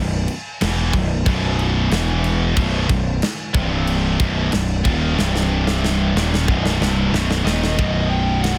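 This heavy metal excerpt opens with a double-tracked, high-gain rhythm guitar riff and a growly, fuzz-laden picked bass sounding together, both up front and bright, with the bass pushed into overdrive. A tight metal drum kit joins at 0.3 seconds, its medium-tuned snare, crash and ride cymbals ringing in a big room while the kick carries soft clipping. The straight 4/4 groove feels epic and weighty, moving through power chords on B, E and C. A drum fill runs from 5.2 seconds, and at 7.4 seconds a dark, distorted lead guitar enters with a high melody in its upper register. Light reverb sits over a dense, heavily limited modern master, and the piece is cut from a longer work.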